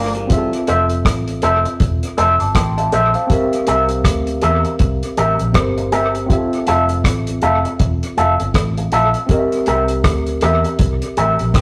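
A cloth-damped, thuddy drum kit with a tight kick, hi-hat and rim click, touched by dub echo, sets a sweet, smooth lovers rock groove at 80 BPM in 4/4 with a swung 16th-note feel, while a dark, foam-muted vintage fingered bass holds the low end under Fmaj7 and C7 changes in F major. Up front, a twangy, scooped electric guitar through an envelope filter plays stabs, and a worn, slightly out-of-tune tine electric piano carries the accompaniment; a slightly broken-up guitar through a small old amp plays arpeggios only in the first 0.5 seconds. Cut from a longer piece, this rough rehearsal-room recording carries tube saturation and a moderate stone room reverb.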